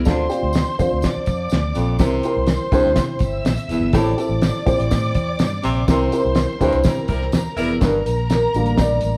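Uptempo 1960s-style soul with an urgent, passionate drive, cut from a longer piece and played by a band live in one room, with moderate large studio reverb and vinyl crackle. A cloth-damped drum kit with a fat snare and tight kick sits up front beside a dark, woody, slightly detuned upright piano, while a round, punchy, foam-muted electric bass and a breathy baritone saxophone riff fill the low end, a lush, distant violin section sings a bowed second line with portamento, and a jingly tambourine stays in the background. The band hits accents from 5.9 seconds, an edgy saxophone section adds a brief second line at 6.6 seconds, and the upright piano takes a short solo at 7.8 seconds.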